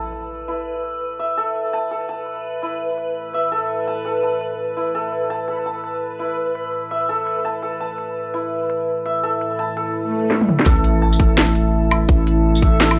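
Swinging half-time drum and bass at 168 BPM, this spacious, heavy excerpt opens with a shimmering, hammered santur arpeggiating through lo-fi sampler grit and tape echo. A cracking, crisp drum kit and a reversed granular texture join it, and from 2.0 seconds a dark, moody analog pad pumps under chorus and phaser while a filter sweep moves across it. A swell and drum fill then give way at 10.7 seconds to a drop where a tight electronic kick and a growling, buzzy 808-style bass hit on A1 with an impact and sub drop.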